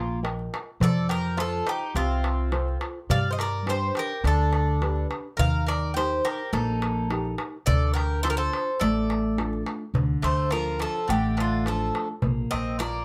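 Heard in a moderate studio reverb, this cool, brooding Greek folk piece moves at 105 BPM in a straight 4/4 in D phrygian, with a bright, metallic lead bouzouki up front over a second double-strung bouzouki line, a dark, full-bodied thumb-plucked nylon-string guitar, a woody, thumpy gut-string upright bass also close in the mix, and a crisp metal-shell darbuka played with hard hands from 0.2 seconds, as the chords pass through Eb, F, G and Dm before a new section arrives at 9.9 seconds.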